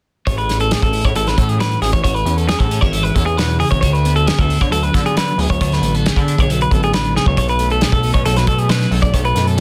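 A twangy, picked clean electric guitar sits up front with bright arpeggios in this wistful, intricate math rock and midwest emo excerpt, moving from Amaj9 to Bm9. A compressed twelve-string electric guitar, lush with chorus, fills in the accompaniment, while a gritty, saturated synth bass with a resonant sawtooth filter pluck gives the low end an aggressive edge. A loose indie drum kit with a tight kick and rolled-off top plays up front in a small room, marked by a drum fill at 7.2 seconds, all under light reverb and a dense, heavily limited modern master.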